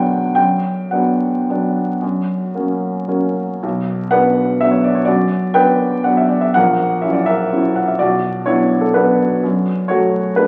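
A rubato waltz in 3/4, drifting between 105 and 132 BPM, this wistful, elegant classical fragment in B minor is cut from a longer piece and played by a solo upright piano spanning A#1 to G5. The piano sits up front with a woody, intimate tone and audible action noise, while a wet recital hall reverb and the crackle of a very old 78 rpm record surround it. Its harmony moves from B minor and F# through F#7 over A# before settling back to B minor and closing on F# minor at 9.4 seconds.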